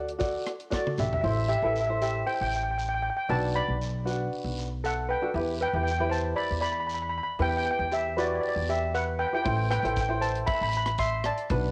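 A straight 4/4 calypso groove at 117 BPM carries this short, bittersweet and moody cut from a longer piece, heard through the soft haze of a home cassette recording with light reverb and small-room ambience. A shimmering, metallic lead steel pan played with hard rubber sticks sits up front, carrying the melody from F#4 to C6 in a bright, mid-forward voice. Beneath it, a light, thumb-plucked tenor ukulele plucks out the harmony, while a woody, dark pizzicato upright bass on steel strings holds the low end up close, and a raspy guiro scrapes along quietly from 0.2 seconds in a live-room space. A dry, tight funk drum kit with a rolled-off top enters at 0.1 seconds and closes its brief opening stretch with a fill from 0.7 to 1.2 seconds, then drops out and returns at 9.5 seconds. The chords move from D into Am7, then Bm, Em and finally Am, giving the sunny island rhythm its wistful shading.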